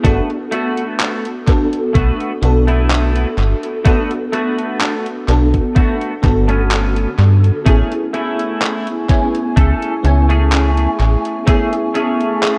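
An echo-heavy, cassette-tape mix with light digital ambience gives this dreamy, faded vaporwave excerpt its hazy glow, with a lightly swung 4/4 feel moving from Gmaj9 to Amaj7. Up front, a lush FM electric piano with a soft pad layer and ensemble chorus carries the accompaniment beside a snappy, metallic slap-like FM bass and a thumpy, overdriven electronic kick. A clean, compressed semi-hollow guitar riff with analog chorus and tape echo sits behind them, along with a detuned, overdriven 8-bit drum machine playing handclaps and hi-hat, before a dark, warbling tape-like pad enters in the background at 7.7 s and the bass drops out at 11.2 s.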